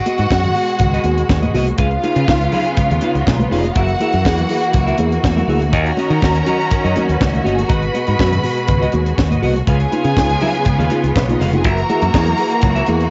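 Smooth, vibrato-rich symphonic violins and a biting, distant string section open this sultry, danceable disco cut, soon joined by a tight, dry funk kit with a high-tuned snare, punchy up-front fingered bass, twangy picked clean guitar with lush chorus, a mellow tine electric piano and soft-handed congas in the background, the strings, guitar and piano carrying a cassette-tape tint within a small, lightly reverberant room on a dulled home cassette recording.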